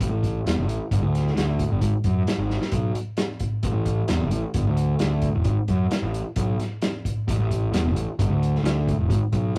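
Indie rock with a jangly, wistful mood, this short passage cut from a longer piece moves at a straight 132 BPM in 4/4. A picked electric bass with fuzz and overdrive sits up front for the full 9.6 seconds, its warm, amped tone ranging from E1 to F#2. Beside it, a vintage acoustic drum kit of hi-hat, kick drum and snare drum plays throughout with a muffled, lo-fi character, a tight kick, a medium-tuned snare and a rolled-off top end. A drum fill arrives at 2.5 seconds. The whole thing carries the rough feel of a rehearsal-room recording, with a moderate, short booth ambience around the instruments.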